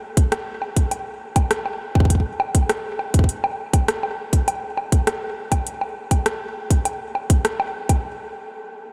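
An electronic kick drum and an analog drum machine of bongos, metallic hi-hat and rim click enter together at 0.2 s in this playful, intricate IDM cut, moving at 101 BPM in a straight 4/4. The kick is tight and up front, while the drum machine carries a tape-warm character and a tape echo, both parts re-recorded in a large room and bathed in a huge ambient reverb that gives the mix a dreamy, soaked feel. The drums stop at 8.0 s, and the clip ends at 8.9 s.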